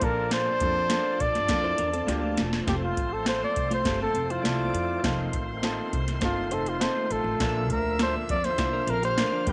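Warm and danceable, this uptempo 1960s-style soul piece is cut from a longer performance and rides a straight groove from an up-front vintage rhythm box, its deep kick, crisp snare and metallic hats overdriven and re-recorded in a large room. Beneath it, a growly pizzicato upright bass with steel strings and a woody tone is colored by transformer saturation, while a clear grand piano sits in the background, intimate enough that its action noise can be heard. A very quiet, gritty tonewheel organ holds thick sustained chords through a slow rotary speaker with chorus vibrato, and a soft-attack studio violin section floats a pure, bowed second line played sul tasto. A clean, compressed electric guitar joins at 1.6 seconds with a fingered riff tucked behind the other parts. After a drum fill at 2.1 seconds, a mellow, forceful trumpet takes a jazz-style solo from 2.7 seconds, up front with scooped notes and a smooth top, as the harmony moves from F to F7 and on to Bb, all set in a small room.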